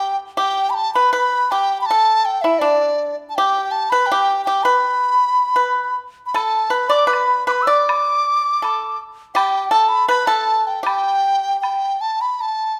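A large bamboo dizi and a pipa sound together from the opening moment in this Chinese traditional chamber piece, a fragment cut from a longer work with a pastoral yet festive mood. The dizi carries the melody, up front and close, its mellow, hollow, airy tone edged by the buzz of its membrane, with tongued notes and gentle vibrato, and it plays on until 12.8 seconds. Beneath it, the pipa provides a second line, plucked with fingerpicks in a dry, percussive, bright voice that sits up front as well and stops at 12.0 seconds. From 6.4 seconds a woodblock joins softly, close and dry, adding light festive accents. The ensemble moves in a loose, rubato two-beat metre, and a moderate recital-hall reverb gives the small group a natural sense of space.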